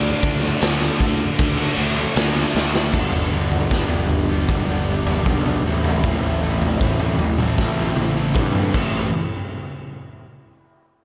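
A raw, up-front garage drum kit with a punchy kick and gritty, pumping room sound drives this cathartic, angsty alternative rock excerpt alongside a very quiet, twangy twelve-string electric guitar melody, a double-tracked distorted guitar riff, two thick fuzz guitar riffs with slapback echo, and a fuzzy, overdriven picked bass, and at 2.9 s a slightly broken-up guitar through a small old amp takes up arpeggios with chorus and delay, all within a big arena-style reverb.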